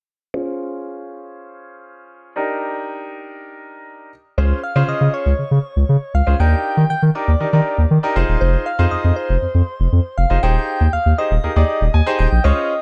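Upbeat and euphoric, this dance-pop excerpt in a straight four-four pulse opens with a bright grand piano alone, its brilliant, natural tone heard through a low-pass filter that sweeps over the opening seconds as it moves between Dbmaj7 and Ebmaj7 chords. At 4.4 seconds the music begins a build-up as a saturated sub bass arrives, deep, thick and sustained, sitting up front in the mix with a fast attack. A soft struck synth lead enters at the same moment to carry the melody, its round, gentle, keys-like FM tone decaying after each note and colored by chorus and tape echo. The harmony moves on through Fm7 and Abmaj7 over Eb, lifting the sense of anticipation. The piano plays a fill near 11.7 seconds, and the whole passage sits in a studio ambience, cut from a longer piece.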